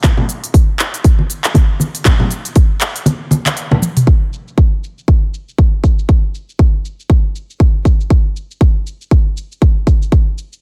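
A swung 4/4 groove at 119 BPM drives this house cut, which feels warm and driving and is lifted from a longer piece. A punchy, layered electronic kick sits up front, joined by a produced house kit of handclaps, crisp hi-hats, shaker and toms, its snare, hats, percussion and toms all softened by low-pass filtering and set in a studio reverb. Low-tuned congas with a thick, damped skin and a vintage, band-limited tone are played with soft hands, sitting up front before they stop at 3.8 seconds, where a drum fill lands. The kick drops out at 3.1 seconds and returns at 4.1 seconds as the track moves into a new section. A digital ambience is heavily squeezed with multiband compression, giving it a dense, radio-like sheen.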